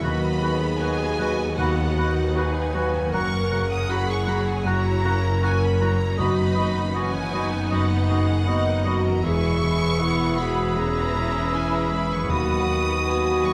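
Flowing rubato in 4/4 at 78 BPM, this uplifting, tender cinematic film-score excerpt in B major sets a rich, vibrato-laden violin section on the melody above second lines from a clear clarinet, a lush second violin section, a pure flute ensemble, and a mellow oboe, while a viola section, a deep-toned concert grand piano, sustained chords from a soft-attacked French horn section, ringing harp arpeggios, and a bowed double bass and cello bass support them, with round soft-mallet timpani appearing briefly from 6.2 to 7.3 seconds, all set within the wet reverb of a scoring stage.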